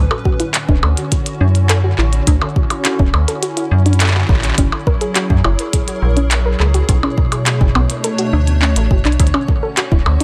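A metallic, up-front FM bass anchors this glitchy, intricate IDM excerpt at 104 BPM in D lydian, with a deep electronic kick from 0.3 seconds, a clicky glitchy kit of handclaps, hi-hats and percussion blips with tape echo, soft round pluck arpeggios carrying chorus and dub echo, a hollow, flute-like pad pumping under sidechain through Dmaj9, F#9 and Bm9, and a flickering, grainy texture in the background from 0.5 seconds, all set in an echo-heavy digital ambience.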